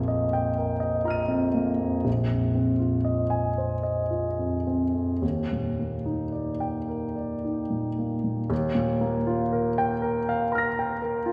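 A clear concert grand piano opens on a hazy Ebadd9 chord and carries this brief, luminous excerpt of impressionist classical music alone, moving in an unhurried, rubato triple metre through Bb9sus4 and Ebmaj7 before returning to Ebadd9 at 8.5 seconds. The instrument sits up front and intimate, with deep bass, long sustain and audible action noise. It rings out into the wet, spacious reverb of a church or concert hall.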